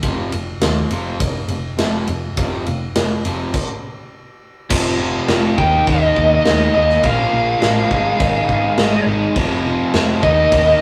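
Powerful and swaggering, this hard rock excerpt from a longer piece moves at 103 BPM in a straight 4/4. Two picked, overdriven semi-hollow guitars play the riff from the start: one sits in the background with spring reverb, and the other is bright and very quiet. Beneath them, a dark, round short-scale hollow-body bass is played with the fingers, and a big acoustic drum kit sits up front with bright cymbals, a medium-tuned snare and a punchy kick, using crash, ride, snare and kick drum. The band stops at 3.5 seconds and comes back in at 4.7, when a warm, double-tracked overdriven guitar joins the riff in the background. From 5.6 seconds a dark, biting lead guitar carries the melody up front over chords moving F5, Eb5, Bb5, Ab5, then back to F5 and Eb5. The sound is a rough rehearsal-room recording with tube saturation and moderate studio ambience.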